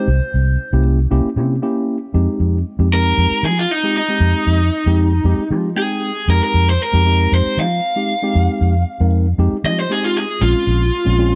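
A raw, overdriven garage electric guitar sits up front and takes a picked solo from 2.1 seconds in this brooding, soulful straight-eighth soul blues excerpt in F minor at 116 BPM, carried by a dark, round, foam-muted fingered electric bass and a mellow, clean tine electric piano accompaniment under light reverb.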